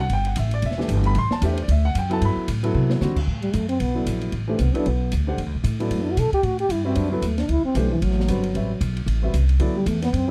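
Close, detailed miking with little reverb gives this short cut from a longer modal jazz piece in E minor a dry, present sound, swinging at 227 BPM with a spiritual, intense mood. An up-front, woody, thumpy pizzicato upright bass and an intimate grand piano with audible action noise accompany over sus4 chords from the start, while a smooth acoustic drum kit with a punchy kick plays a fill at 2.7 seconds. A dark trombone with light vibrato enters at 3.4 seconds and takes a jazz solo through to the end.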